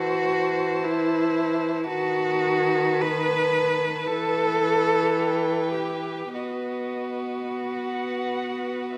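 A moderate large-studio reverb surrounds this short excerpt from a slow, romantic string-quartet movement, yearning and solemn in mood and shaped with rubato in 4/4. All four players bow con sordino with vibrato for a dark, veiled colour: the first violin sings the melody from a distance, and the second violin holds its line in the background. The viola's soft-attacked, smooth-topped accompaniment sits up front beside the close cello, whose bass line glides with portamento.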